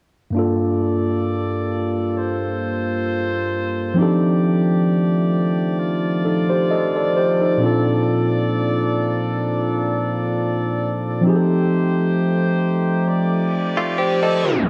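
R&B at a slow 66 BPM in G minor, moody and late-night, with a gentle 16th-note swing, cut from a longer piece. A mellow, up-front tine electric piano carries the accompaniment over soft-attack brass ensemble chords through Gm9, F13, Bbmaj7 and F9, all bathed in a lush hall reverb and the warbling pitch drift of worn cassette tape. Near the close an electronic reverse cymbal rises in at 13.4 seconds, a twangy, clean electric guitar adds delayed arpeggios from 13.8 seconds, and a tape stop hits at 14.4 seconds.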